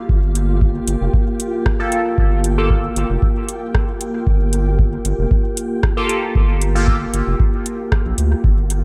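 A straight 4/4 dub techno pulse at 115 BPM sets a meditative, deep mood in G minor on a Gm7 chord, with an up-front tape-warm kick and a booming analog drum machine of metallic hi-hats and rim clicks thrown into dub echo, a round, wave-folded analog bass pumping under sidechain, a warbling, nostalgic lo-fi pad holding sustained chords with chorus and built-in reverb, a flickering grainy texture murmuring in the background, and a juicy, resonant polysynth with a filter sweep firing stabs through phaser, cassette tape and dub echo at 1.8 and 6.0 seconds, all in a light digital ambience of this short cut from a longer piece.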